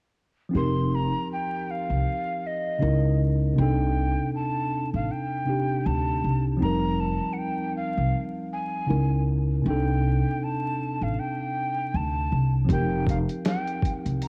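Vinyl crackle, light reverb and a small-room cassette haze frame this reflective, melancholic lo-fi hip hop fragment at 79 BPM in 4/4, with a lazy 16th-note swing. A worn, slightly out-of-tune tine electric piano, filtered and tape-softened, moves through F9sus4, Dbm69 and Cm69 over a woody, dark pizzicato upright bass on gut strings. Above them, a breathy, bright metal jazz flute carries the melody with vibrato and a crisp, chiffy attack, and a gritty, compressed sampler-style drum kit with a thumpy kick and medium-tuned snare arrives only at 12.7 s, near the close of this short cut from a longer piece.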